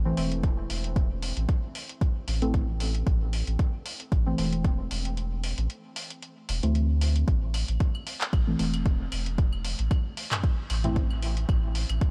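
An overdriven, up-front electronic kick drives this meditative, hypnotic dub techno excerpt at a lightly swung 114 BPM in A minor, dropping out from 5.2 to 7.3 seconds, beneath a round, soft sub bass with sidechain pumping, dark, warbling chord stabs steeped in chorus, phaser and dub echo, a vintage rhythm box of handclaps and metallic hi-hats, and background claves and toms with overdrive and dub echo arriving at 7.5 seconds, within a digital ambience.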